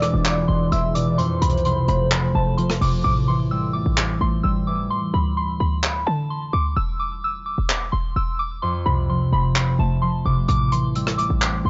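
A soft, pure FM synth bell carries the high melody over a thumb-plucked, ringing concert harp, joined by a velvety, vibrato-tinged synth lead as a second line and a dark, detuned ambient pad sitting deep in the background, until both drop out at 3.0 s. This is an eerie yet hard-hitting half-time trap groove at 129 BPM in A minor, driven by a punchy, tight sine-based 808 bass and an up-front brush kit of handclaps, hi-hat and rim clicks. The hi-hats are muted from 3.0 to 10.5 s as a break runs from 4.9 to 8.6 s, and the dry, gritty cassette sound of the small room dulls the top end of this excerpt cut from a longer piece.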